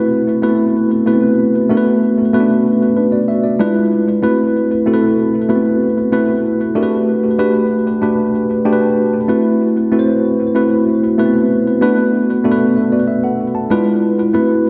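A worn, slightly out-of-tune tine electric piano carries this nocturnal, urban pop fragment in A dorian at 95 BPM on its own, mellow and up front with subtle chorus and delay, moving through jazzy chords such as Am69, Bm7, E7b9 and Gmaj9, adding a brief fill at 8.3 seconds, and sitting in a dreamy mix soaked in lush hall reverb.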